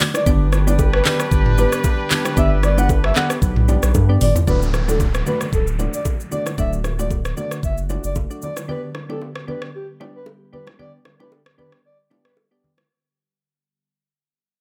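Afrobeats at 114 BPM with a lightly swung sixteenth feel, this romantic, joyful clip opens on a G chord as an electronic drum kit with a knocking kick, metallic hats, handclaps, rim clicks, shaker and toms sits up front alongside a thick, saturated sub bass, with ringing congas and bongos further back. Soft, round electric-piano-like keys with chorus and a filter sweep, a glassy, ethereal FM pad and a breathy flute-like lead with vibrato carry the harmony and melody, while a horn section adds a second line until 4.2 s. After a drum fill, the music moves to D at 4.5 s, a downlifter sweeps through as the sound fades out, and the bass stops at 8.3 s before a closing break from 10.8 s.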